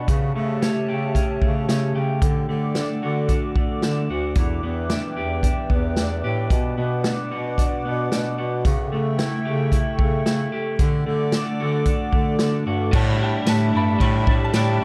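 Dream pop with an ethereal, dreamy mood, this excerpt moves in a straight 4/4 feel through a cycle of A7/C#, D, Em7 and Bm before settling on A7sus4 at 12.9 seconds. A hollow, airy pad with a flute-like softness and chorus holds sustained chords high above, while an up-front electric guitar at the edge of break-up, dark and picked, spins arpeggios through subtle chorus and dub echo. Underneath, a clear bass clarinet carries the bass line in a jazz style, its notes scooped and touched with light vibrato. A vintage acoustic kit with dark cymbals, a punchy kick, a medium-tuned snare and tambourine sits close in a small room, its top end rolled off. At 12.9 seconds a second, compressed guitar joins with tremolo, ensemble chorus and dub echo, and at 13.0 seconds a pure FM synth bell with chorus and dub echo adds a gentle melody, all within an echo-heavy mix with light reverb.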